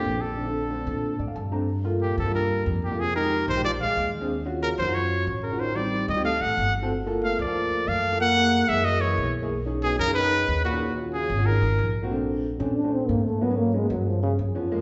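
Jazz with a lively, sunny straight feel, where a clear trumpet carries the melody with light vibrato up front until 11.9 seconds, a mellow, punchy trombone plays a second line before taking a forceful solo from 12.1 seconds, a dark, boxy upright piano with audible action noise accompanies and adds a brief fill at 1.0 seconds, and a woody pizzicato upright bass anchors it all in a reverberant recital hall with a rolled-off top end.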